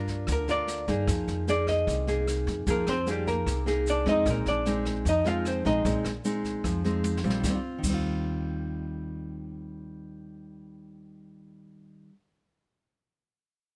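A dry recording with little reverb carries this breezy, sophisticated bossa nova excerpt in Eb major at 151 BPM, where a dark, clean hollow-body archtop guitar sits up front, playing a picked melody from 0.3 to 6.0 seconds over the chords Gm7, Fm11 and Bb9sus4. A fingerpicked classical nylon-string guitar, also up front, supplies the accompaniment alongside a woody, growly pizzicato upright bass, while a brushed drum kit with dark cymbals and a boomy kick plays through a drum fill from 7.0 to 7.4 seconds. A grainy, mellow tube shaker stays in the background, and the harmony settles onto Eb69 as a new section begins at 7.4 seconds.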